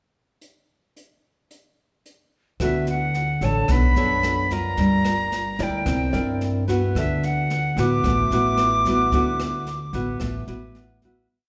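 A brushed jazz drum kit opens this romantic, breezy bossa nova alone at 0.4 s, setting a straight 4/4 groove at 110 BPM with hi-hat, rim click, a medium-tuned snare and a boomy kick. At 2.6 s the rest of the band arrives in D major. A reedy silver concert flute, airy and up front with a straight, tongued tone and rolled-off highs, spins a motif-based melody in sentence-like phrases. Beneath it, a fingerpicked classical nylon-string guitar, equally forward and warm, plays thumb bass against syncopated plucked chords through D69, Bm9, Gm7 and C9. A woody, thumpy pizzicato upright bass with steel strings plays a dotted root-and-fifth line. The whole piece sits in a wet recital-hall reverb and fades out from 9.1 s to its close.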